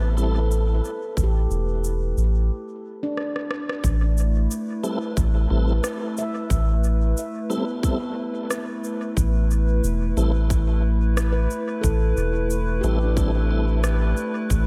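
A warbling, lo-fi pad holds detuned chords over a ringing steel handpan tracing delayed arpeggios and a deep, round sub bass, opening this hazy, meditative ambient dub excerpt in A minor at 90 BPM with a gentle 16th-note swing. Echoed electronic cabasa and rim clicks arrive almost at once alongside a fleeting organ stab, a tight electronic kick joins at 1.2 seconds, and after a brief break and drum fill the harmony shifts to A minor seventh at 3.8 seconds. From 4.8 seconds the mellow, dark tonewheel organ returns with clean stabs carrying key click, chorus vibrato, fast rotary swirl and dub echo, all set in light digital ambience with the bass sitting up front.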